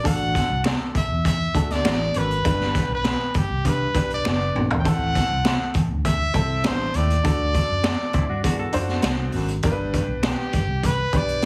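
A straight 4/4 groove at 100 BPM drives this urgent, uptempo 1960s-style soul excerpt: a forceful trumpet with scooped notes carries the melody over a brilliant, woody upright piano, a round, foam-muted vintage electric bass and a gritty, saturated garage drum kit with a punchy kick and a drum fill at 4.2 seconds, while a warm baritone saxophone riff sits in the background, close, dry finger snaps add percussion, a clean hollow-body electric guitar riff slips in at 8.1 seconds, and light reverb and small room ambience frame a heavily compressed radio sound.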